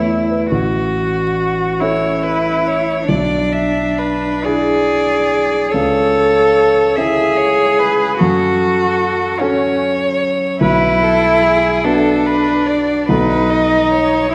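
Lyrical and serene, this slow romantic piano trio movement in A major drifts in 6/8 at about 42-50 dotted-quarter beats per minute with a gentle rubato, in a passage cut from a longer piece. A rich, smooth bowed violin sings the melody with vibrato over a cello's even second line, while an up-front concert grand with deep bass supplies the accompaniment through harmonies moving from A to F#m and Bm7. The warm, up-front cello and the other parts sit in a lush concert hall reverb with a 2.3-second decay, and a vinyl crackle runs beneath the music.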